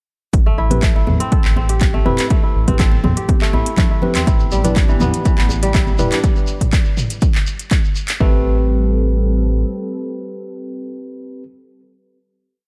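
Earthy and driving, this short afro house piece opens straight into a drop where an up-front, punchy overdriven kick keeps four-on-the-floor time, joined by a house kit of metallic programmed hats, clap and low tom, ringing high-tuned congas in the background and, from 4.3 seconds, a grainy hand-played shekere. Beneath them a smooth, mellow sawtooth bass glides through a syncopated riff with vibrato and portamento, pumping against the kick, while a crisp fingerpicked kora loops a 12-step pattern drifting against the bar and a clean tine electric piano drops syncopated rootless stabs, both carrying tape echo. A detuned, chorused analog pad swells in with dark, full-bodied sustained chords at 4.5 seconds and carries on with the piano, kora and bass into the final chord from 8.2 seconds, all set in a dark digital ambience.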